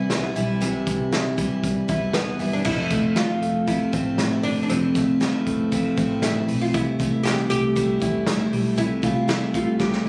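Jangly indie pop at 118 BPM in a breezy, youthful excerpt, where a woody, plectrum-plucked oud with double strings carries the melody through slapback echo over a bright, full-bodied steel-string acoustic guitar with audible finger squeak, bright clean electric guitar arpeggios recorded direct and set in spring reverb, a dark, round, foam-muted vintage bass, and a loose, gritty drum kit with a punchy kick and rolled-off top, moving from Cmaj7 to Fmaj7 at 2.7 seconds before a drum fill at 9.8 seconds, all captured on a phone in a small room with club reverb and compression.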